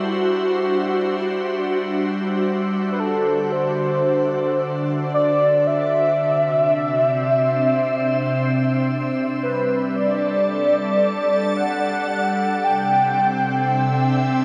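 Floating in free time, this serene ambient passage, cut from a longer piece, sets a velvety, detuned synth lead with chorus, vibrato, shimmer reverb and tape echo singing a smooth melody over a pure, up-front organ-like pad whose slow-attack sustained chords, shimmering and ensemble-chorused, drift from D7/G through D9, Cadd9 and Gsus2, all bathed in a huge ambient reverb.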